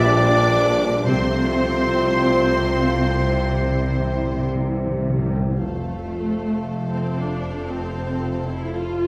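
A wet recital-hall reverb surrounds this slow, serene romantic orchestral excerpt in F major, moving with rubato at around 50-58 BPM in 4/4. Clear, vibrato-laden violins carry the melody high above a second violin line, while a hollow flute section, clarinet and oboe add a short second line alongside soft-edged trumpet stabs. A lush viola section fills in the accompaniment, mellow horns and quiet, bright trombones hold sustained chords, and a ringing harp arpeggiates throughout; cellos, double basses and tuba anchor the bass, and timpani struck with hard mallets add a fill from 3.4 to 5.6 s before the passage settles onto F.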